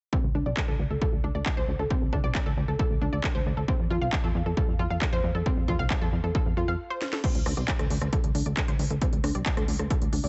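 Dry and close, with little reverb and a dark top end, this cut from a longer uplifting trance piece moves at 135 BPM in a straight 4/4 with a bittersweet, driving mood in D minor. A punchy, tape-warm electronic kick sits up front, joined from 0.6 s by a layered techno kit of cracking snare, smooth hi-hats, handclaps, rim clicks and crash cymbal. A funky, wave-folded analog bass with a fast, decaying filter pluck also sits up front, pumping with sidechain compression while a filter sweep opens it through the first section. Above it, a round, warbling vintage pluck of detuned sawtooth, pulse and triangle waves plays arpeggios, treated with chorus, sidechain pumping and dub echo, and filter sweeps run across both sections. The harmony moves from D5 to F and back to D5. A short break at 6.8 s and a drum fill at 7.0 s lead into a new section at 7.2 s.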